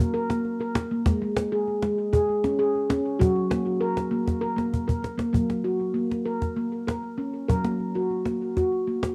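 A ringing, nitrided-steel handpan leads this dreamy, calm piece of meditative world music, spinning arpeggios from the first moment. Its mellow, vintage tone, shaped by soft fingertips, sits up front with a band-limited cassette character and a tape echo that lingers behind each note. A woody cajon joins at 0.2 seconds, close and dry with faint snares, keeping an acoustic pulse in an unhurried 7/8 metre. The harmony rests on F#, drifts to G#sus4 and settles back on F#. Near 4.7 seconds the cajon plays a short fill that ushers in a new section, and the handpan and cajon carry the calm mood through to the end of this fragment of a longer piece. A moderate studio reverb and the homespun tape sound give the recording an intimate, gently aged feel.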